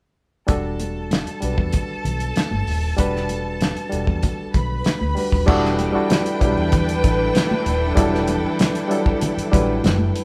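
A cloth-damped, thuddy drum kit with a fat snare and an up-front, barky, lightly overdriven reed electric piano open this lush, cinematic and smooth 1970s-style soul excerpt at 0.5 s together with a round, foam-muted fingered bass, very quiet high-tuned congas played with soft hands, and an even, vibrato-laden studio violin section carrying a second line over an Em11 chord, before a symphonic string section adds focused sustained chords in the background from 5.5 s, the band playing live together in one room with a moderate, large studio reverb.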